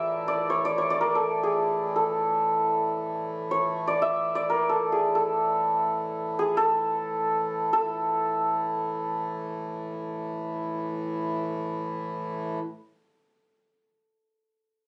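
Unfolding in free time with an unmetered pulse, this short Hindustani classical passage, cut from a longer piece, feels radiant and devotional. A santur carries the melody up front between E4 and E5, its hammered strings shimmering and ringing. Beneath it, a hand-pumped harmonium holds a reedy, nasal drone between A2 and E3, set well behind the santur with a breathing quality. Both parts sound throughout the 12.6 seconds, with the music moving from an opening passage into a new one at 7.7 seconds that runs to 11.9 seconds. Captured on a phone in the room, the sound is close and fairly dry, touched by a club-like ambience and compression.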